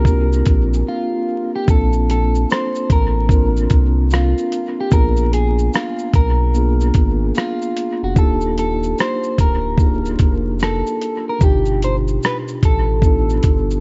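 Mellow and cosy, this lo-fi hip hop fragment in Bb major sways at 74 BPM with a swung 16th-note feel: a gritty, compressed sampler-style drum kit with a thumpy kick, hi-hat, rim click and shaker sits up front beside a deep sine-and-triangle sub bass with octave, while a clean tine electric piano through built-in speakers comps and a slightly broken-up picked electric guitar carries the melody, both bathed in dub echo, over chords moving from Bbmaj7 through Bb7b9 and Ebmaj7 to G7b13, with a break from 0.9 to 1.7 seconds, all wrapped in an echo-heavy mix with vinyl crackle and a dark, rolled-off top.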